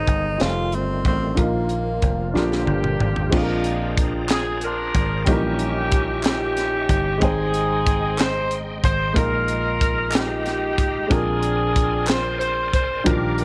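A breathy tenor saxophone with scooped notes opens this reverent, jubilant slow gospel excerpt in 6/8, over woody, slightly detuned upright piano, reedy tonewheel organ with fast rotary speaker and chorus vibrato in the background, punchy thumbed slap bass and an up-front funk drum kit with dark cymbals and a high-tuned snare, before a distant-sounding saxophone section with soft attack takes the melody at 2.4 seconds, the solo tenor stops at 2.7 seconds, a drum fill leads into the second section, and hollow group handclaps join at 4.3 seconds, in a dry, close sound.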